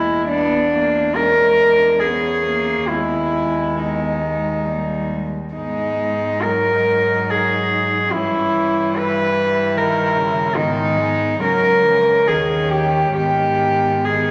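A warm, floating single cello sings the melody up front, bowed sul tasto with a pure, smooth tone, in this melancholic, yearning excerpt from a longer classical piece for cello ensemble in G# minor, moving in a rubato 3/4 at around 64-76 BPM. Beneath it, a dark, intimate second cello with light vibrato sits in the background, a clear, slightly nasal cello carries the accompaniment, and a soft-attacked cello holds the bass line. The four players blend in a wet scoring stage reverb through a harmony that passes from E7 through a Gdim7 to settle on G#m, closing with C#m, D#7 and G#m at 13.1 s.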